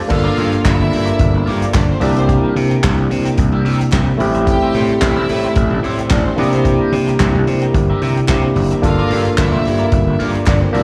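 Heard through a venue's PA with a light recital-hall reverb, this short cut from a longer disco piece sounds glamorous and driving at 110 BPM in a straight 4/4, sitting in G dorian and moving through Gm7, C7 and Am7 before returning to Gm7 at 8.8 seconds. A gritty slap bass sits up front in the mix, overdriven, growly and punchy, while a soul drum kit with a fat snare, tight kick and rolled-off top keeps the beat with hi-hat, crash cymbal and handclaps. A barky tine electric piano played through a combo amp and a twangy electric guitar at the edge of break-up, colored by wah, supply the accompaniment, both carrying slapback echo. A clear, earthy violin section bowing with light vibrato adds a second line with the same echo, and a mellow, close-miked French horn section holds very quiet sustained chords beneath it. A crisp group handclap, barely audible, joins at 0.7 seconds and drops out at 10.6 seconds.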